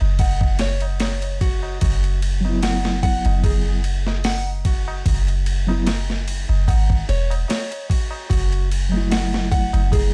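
A deep, round 808-style bass sits up front in this brooding, smoky trip hop excerpt, its soft sine tone striking fast and then decaying darkly between E1 and G#1. Beside it, a dusty, sampler-style drum kit with a thumpy kick, medium-tuned snare, hi-hat and ride cymbal comes in at 0.2 seconds, compressed and overdriven for a gritty edge, moving at 74 BPM in 4/4 with a light swing on the sixteenths. A high-tuned, ringing tabla sounds in the background of a small room from the start, while a fingerpicked nylon-string guitar plays classical-toned arpeggios through a tape echo. At 2.4 seconds a reedy, mellow electric piano joins with a fast tremolo, heard through its built-in speakers. The harmony moves from F#5 to Esus2 and on to F#m7, all captured in a dry hardware recording with transformer saturation and vinyl crackle.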